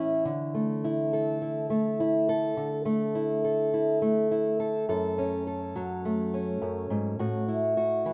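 A straight 4/4 pulse at 104 BPM carries this short folk passage, cut from a longer piece and tuned to A4 = 437 Hz. A lone fingerpicked, ladder-braced acoustic guitar plays throughout, its old strings giving a dark, woody tone that sits up front in the mix. A digital delay trails the guitar, and a moderate studio reverb adds a little space around the rough, home-demo sound. The opening phrase rests on Dsus2 from 0.3 seconds, then a new section turns to F#m at 4.9 seconds before landing on A6 at 7.2 seconds. The guitar ranges from F#2 to A4, and the mood is nostalgic yet uplifting.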